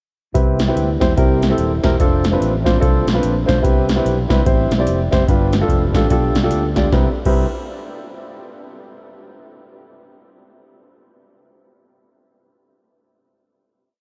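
Hopeful and jubilant, this uptempo gospel piece swings along in 4/4 over a driving two-beat praise groove from an overdriven analog drum machine, its deep kick, punchy snare and metallic hats sitting up front. A woody upright piano with long sustain plays close-voiced rhythmic chords, while a round, dark fingered electric bass walks and runs with chromatic approach notes, and a very quiet French horn section holds a soft-attack pad beneath them. The dreamy mix is soaked in huge ambient reverb through a breakdown that gives way at 6.9 seconds to a final Cmaj7 chord.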